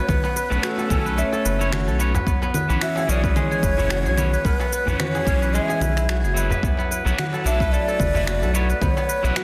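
Warm and hypnotic, this short organic downtempo cut moves at 110 BPM in 4/4 with a gentle 16th-note swing, moving through Aadd9, C#m7 and Esus2. A breathy low ney carries the melody from the start, its reedy, end-blown tone unsteady with vibrato and lifted highs, trailed by delay, while a mellow, ringing kora spins fingerpicked arpeggios through a digital delay beneath it. A round analog bass sits up front with a dark, nasal, sine-like depth and a pumping sidechain feel. The beat pairs a punchy, overdriven electronic kick with layered electronic congas, cabasa and finger snaps, both in a small room ambience, while a crisp metal-shell darbuka played with soft hands stays in the background. From 0.5 seconds a twangy electric guitar at the edge of break-up adds picked accompaniment, pumping and echoing through its own digital delay. Light reverb and a dense, heavily limited modern master hold the whole fragment tight and loud.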